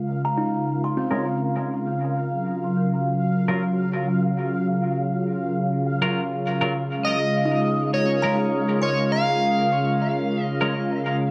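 Ambient piece in Bb minor at 101 BPM, a deep, spacious excerpt cut from a longer work with a gentle 16th-note swing. A smooth, detuned sawtooth pad with chorus sits up front, holding sustained chords that move from Bbm7 to Gbmaj7 and back, while a quieter bubbling texture of resonant, randomly stepped filter tones hovers on a high F beneath its own built-in reverb. A buzzing, woody kalimba plays arpeggios through a low-pass filter and dub echo in two passages, and a bright, clean semi-hollow electric guitar adds compressed stabs from 1.1 seconds, both parts carrying a filter sweep. At 7.0 seconds an overdriven slide guitar enters up front with a fingered melody soaked in dub echo. The echo-heavy mix sits in a moderate spring reverb, giving the whole a roomy, drifting feel.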